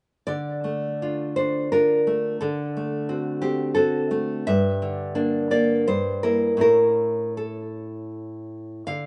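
In a rubato three-four sway, this wistful, intimate romantic piece for solo classical guitar gives us a warm, fingerpicked nylon-string guitar sitting up front from 0.3 to 9.1 seconds, moving through D minor, D7, G minor, E diminished over G and A, its tone touched with slapback echo and light reverb in a dry outdoor setting with a softly dulled top end, all heard as a brief cut from a longer work.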